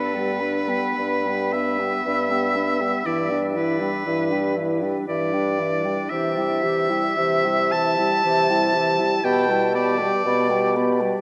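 A slow, romantic classical movement for wind quintet, this excerpt from a longer piece moves in a rubato 3/4 at around 59 BPM in G major, its mood melancholic and yearning. The bright oboe sits up front with a light vibrato, carrying the second line, while the airy, wooden baroque flute sings the melody in straight tone with a crisp attack from the background. Beneath them, a mellow clarinet with a soft attack and a dark French horn with gentle vibrato supply accompaniment from a distance, while a bassoon with a vintage, softly attacked tone holds the bass. The harmony passes from G to Em7/G at 3.1 seconds, C at 6.1 seconds and G/B at 9.2 seconds, and the oboe falls silent slightly before the others at 10.7 seconds. A cathedral reverb with a long 6.4-second tail places the ensemble in a vast, echoing space.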